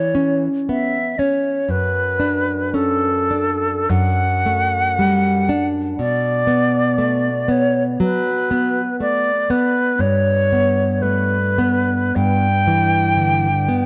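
A bright silver concert flute and a fingerpicked nylon-string guitar begin together in this lyrical, romantic duo in D major, drifting at a slow, rubato 49-61 BPM in 4/4 through harmonies that move from C#m7/E to D/F# at 1.7 seconds and on to Bm and Em7/G. The airy flute sings the melody up front with a soft attack, vibrato and lifted highs, while the full-bodied, deep classical guitar supports it just as closely. A moderate plate reverb and a dark, warm production give this short passage, cut from a longer piece, an intimate glow.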